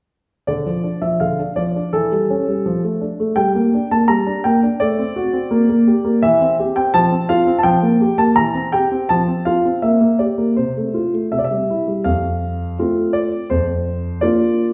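A restless, dramatic classical-period piano sonatina excerpt at 84 BPM in 2/4, where a solo grand piano with a present, polished tone moves from D minor into F major around 6.2 s, its chords of Gm, D7/A and C7/E ringing in a wet recital-hall reverb heard from further back in the room before a new section begins at 12.1 s and the cut ends at 14.7 s.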